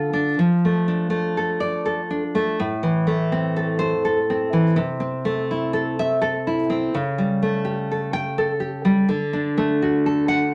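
A full-bodied nylon-string guitar plays alone and up front, fingerpicked in a tender, sunny romantic style with a flexible rubato sway in three. Its deep classical tone spans a broad range, with finger squeak audible, as the harmony moves through Dm/F and Am before brightening to A7/C# at 6.9 seconds and settling on D. A wet studio reverb gives this short fragment of a longer piece a gentle sense of space.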